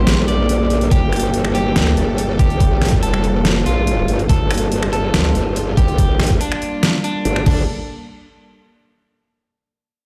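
Chaotic and menacing, this half-time heavy wobble dubstep excerpt in G minor at 142 BPM sets a growling, overdriven, chorused bass and an up-front knocking electronic kick entering at 0.9 seconds against overdriven drums with deep snare, bright hats, finger snaps and crash, while a dark, bowed string section pumps on a sustained Gmadd9 chord and a slightly broken-up picked electric guitar carries the melody through digital delay, all in large studio reverb as if played on a big sound system in a bare room, before the harmony drops out at 7.7 seconds.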